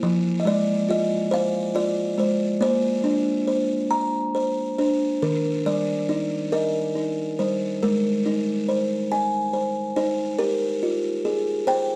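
The rhythm moves in a gentle 6/8 at 46 beats per minute, counted in dotted quarters with a straight feel, giving this tender, innocent children's lullaby in Eb major an unhurried sway. A single buzzing kalimba plays alone from 0.0 to 12.0 seconds, plucked softly with the fingertips and ranging from Eb3 to Bb5. Its solid-board tone is woody and mellow, with a ringing, airy quality, and it sits up front in the mix. The harmony drifts through Fm, Bbadd9, Eb and Ab before settling on Fmadd9 near 10.4 seconds. A moderate recital-hall reverb and a dark, warm production wrap the instrument in a soft glow, and the passage is cut from a longer piece.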